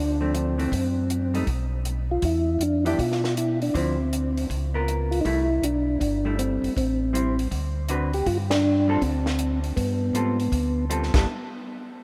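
A soft, flute-like tonewheel organ carries the melody in this soulful, greasy soul jazz organ trio excerpt, its percussive attack and chorus vibrato turning slowly through a rotary speaker. Beneath it, a second tonewheel organ handles the bass, round and up front with audible key click, also spun through a slow rotary speaker. A clean, dark hollow-body electric guitar enters at 0.2 seconds with fingered accompaniment, and a compact cocktail drum kit joins at 0.3 seconds, dry and acoustic with dark cymbals, a high-tuned snare and a punchy kick. The tune swings at 159 BPM in G mixolydian, moving through G9sus4, E7, Dm9 and Am7 changes before the whole band hits an accent at 8.5 seconds and settles onto a G69 chord. A moderate cathedral reverb places the group in a vast, echoing space.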